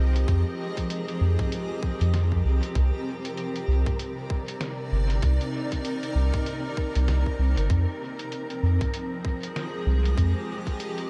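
A swung sixteenth-note groove in 4/4 drives this deep, spacious ambient dub excerpt, with a tight, overdriven electronic kick and a muffled, pitched-down sampler-style kit of congas, hi-hat and snare sitting in the background under a dub echo. A round, soft sub bass holds the low end while a blurred, evolving granular pad sustains Fm7 and Cm7 chords, and a breathy, wind-like tuned noise layer drifts quietly behind it. The pad and noise texture carry their own reverb, and a light reverb gives the whole short cut an airy sense of depth.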